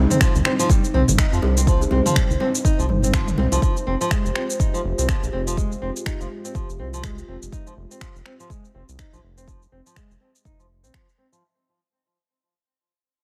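This hypnotic afro house excerpt opens on a dark, moody analog pad holding sustained chords in the background, shaded by chorus and phaser, together with a round, deep analog bass up front, both pumping with sidechain. A fingerpicked nylon-string guitar plays classical arpeggios through a low-pass filter and delay, also sidechain-pumped, with a filter sweep running over its full length. A tape-warm electronic kick sits up front, while an overdriven, layered deep house kit adds finger snaps, shaker and toms with a swung sixteenth feel. Soft-handed congas and tight, high-tuned bongos sit in the background early on, dropping out around 3.5 s. The harmony moves from Cm to Fmadd9 at 3.6 s, and the section fades out throughout.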